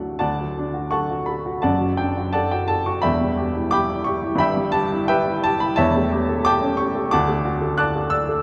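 A romantic classical character piece for solo piano, this passionate, lyrical excerpt moves at 88 BPM in 2/4 with a free, rubato feel in D major. The baby grand sounds warm and present, placed up front with a short sustain, and spans from deep bass to bright upper notes as the harmony travels from D through E minor to A7 before settling back on D at 7.1 seconds. A cavernous cathedral reverb with a long tail surrounds the piano, setting it in a vast, echoing space.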